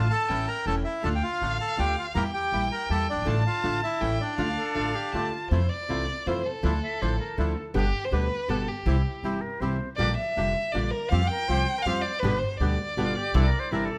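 In a rubato 3/4 at 161 BPM, this melancholic, tense tango excerpt opens in D harmonic minor, with a dark, reedy bandoneon carrying the melody up front while a rich, bowed violin sings a second line with vibrato and portamento. Beneath them, a woody pizzicato upright bass anchors the low end, a fingerpicked nylon-string guitar adds warm classical accompaniment, and a second bandoneon, close-miked, dry and full, punctuates from the background with stabs. An airy silver concert flute with rolled-off highs and a straight, tongued tone slips in at 4.6 seconds with its own second line. At 5.5 seconds the harmony turns toward F major, moving through chords such as Fmaj7, G and Cadd9, and the violin takes over as an expressive solo. Light reverb gives the ensemble a modest sense of space, and the passage is cut from a longer piece.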